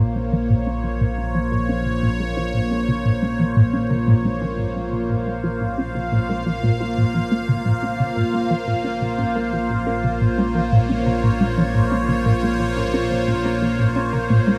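Ambient, sequencer-driven space music at 88 BPM in Bb minor, this mysterious, hypnotic piece, cut from a longer work, holds a single Bbm chord throughout its 14.6 seconds inside a vast, echoing reverb. A bright, up-front wavetable pad with phaser sustains morphing, detuned chords, while a squelchy, resonant blip pluck carries the riff through phaser, analog chorus and tape echo. Underneath, a very quiet, lo-fi dusty pluck warbles through arpeggios, and a vintage analog drone with chorus anchors the bass on Bb1.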